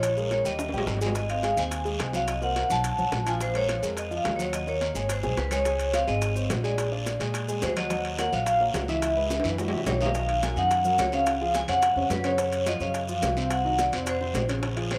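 A driving, sophisticated Afro-Cuban jazz excerpt at 214 BPM in 4/4 opens with the full band at once: a bright, airy vibraphone carries the melody with medium hard mallets and a medium motor vibrato, over an intimate baby grand piano with audible action noise and short sustain, both carrying a cassette-tape tint. A woody pizzicato upright bass anchors the shifting jazz harmony, while saturated metal-shell timbales, low-tuned bongos, a raspy guiro and grainy maracas in the background fill out the percussion, with drum fills around 0.6, 5.2 and 9.3 seconds. The home cassette recording sits in a wet spring reverb, and the maracas drop out at 14.6 seconds.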